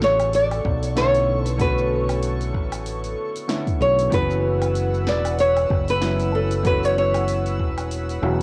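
This sunset chillout piece has a smooth, relaxed mood and a gentle swing, cut from a longer piece. A fingerpicked nylon-string guitar carries the melody up front, its small acoustic tone trailed by tape echo and plate reverb. Beneath it, a natural-sounding grand piano plays the accompaniment through cassette tape and tape echo, while an airy, breathy pad holds soft, mellow chords with a slow attack, detuned chorus shimmer and a long release. A bright, growly fingered electric bass sits direct and prominent in the low register. A layered deep house kit of punchy snare, hi-hat, shaker and woodblock runs until 8.2 s, joined at 0.6 s by a deep electronic kick, both re-recorded in a small room, as the harmony moves from Bm9 to F#7sus4 at 4.1 s. The whole home cassette recording carries a moderate small-room reverb.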